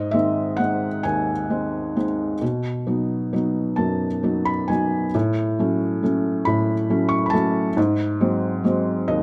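In a slow, rubato 6/8 at 44 dotted-quarter beats per minute, this short cut from a longer classical piece unfolds as a lyrical, reflective solo for felt-muted upright piano, spanning D#2 to C#6 across its 9.2 seconds. The piano sits up front with a soft, mellow, intimate tone, its action noise audible through close, detailed microphones and light reverb. Wistful harmonies move from G# through B and F#m/A before settling on G#7 at 7.8 seconds.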